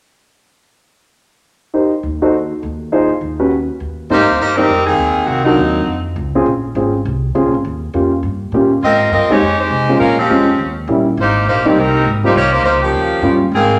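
A wet large-studio reverb surrounds this joyful, swinging big band jazz fragment, cut from a longer piece. A warm, long-sustaining grand piano sits up front with accompanying chords from 1.7 seconds, and a woody, steel-strung upright bass joins with acoustic pizzicato lines underneath. An edgy, close-miked saxophone section carries the melody as an ensemble with vibrato, entering at 4.1 seconds and returning at 8.8 seconds over rich extended jazz harmonies.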